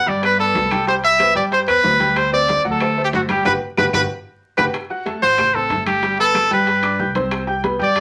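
A straight 4/4 salsa groove drives this sunny, joyful fragment of a longer latin piece. A bright, up-front trumpet carries the solo melody in a pop style. A brilliant, slightly detuned upright piano with long sustain comps behind it, over a thumpy, woody pizzicato upright bass on steel strings. Ringing congas, tight high-tuned bongos played very quietly with soft hands, metal-shelled timbales and woody claves sit in the background, wrapped in wet studio reverb and a layer of vinyl crackle. The band hits a shared accent from 3.5 to 4.7 seconds, with a drum fill from 3.9 seconds. At 4.7 seconds the music moves into a new section, with the harmony passing from Gmaj7 to F#dim and back toward G.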